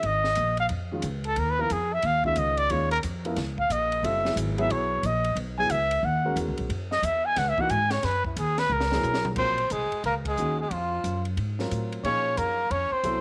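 A light studio reverb frames this spiritual, cool modal jazz excerpt at 180 BPM in swung 4/4, where a breathy, whispered trumpet sits up front with scooped notes and light vibrato, soloing over an Eb9sus4 that moves to Gb9sus4 at 4.0 seconds. A woody, thumpy upright bass with gut strings, a compact cocktail drum kit with dark cymbals, a high-tuned snare and a punchy kick, and a mellow grand piano entering at 0.9 seconds support the lead. After a drum fill, the music settles into Bb minor at 9.4 seconds, where a bright tenor saxophone joins as a second line, followed by a band accent at 10.2 seconds.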